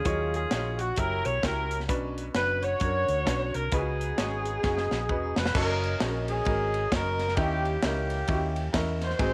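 A mellow, distant horn section and a roomy alto saxophone with vibrato open this uptempo gospel excerpt in F# major, carrying the melody over a clear, woody upright piano and a dark, round hollow-body electric bass sitting up front, with a tight funk drum kit joining at 0.1 seconds. At 131 BPM in a swung 4/4, the mood is uplifting and reverent, and extended chords such as D#m9, F#7b9 and C#9sus4 sit under light reverb. The saxophone stops at 5.4 seconds, and after a drum fill the horns, piano, bass and drums carry on over F#6 and D#7b9.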